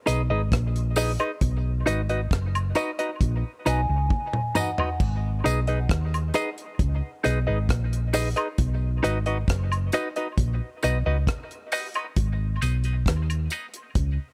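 A deep, heavy dub reggae groove in G# minor at 67 BPM opens with a dry, tight-kicked reggae drum kit with dark cymbals, a round, dark hollow-body electric bass up front, a clean, scooped semi-hollow electric guitar soaked in dub echo, and close tambourine and woodblock, all cycling between G#m and B in a studio reverb, while a mellow soft-mallet vibraphone rings briefly from 3.7 seconds, a drum fill arrives at 4.1 seconds and a filter sweep runs from 8.6 seconds to the end.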